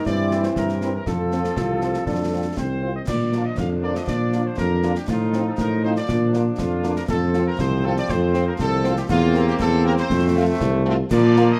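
A dark, punchy trumpet section carries the melody of this rousing, spirited wind-band march in B-flat major at 120 BPM in 2/4, opening alongside bright, tight trombone chords, a clear, vintage-toned solo euphonium and a very quiet, airy flute ensemble with vibrato, the last two dropping out by about 3.1 seconds. A mellow, up-front tuba anchors the bass while a clear French horn section fills in the accompaniment, and concert snare, bass drum and clash cymbals with dark cymbal tone sound close and dry. The brass carry classical-style polish in a lightly reverberant, closely miked setting, and the cut ends at 11.6 seconds, partway through a longer piece.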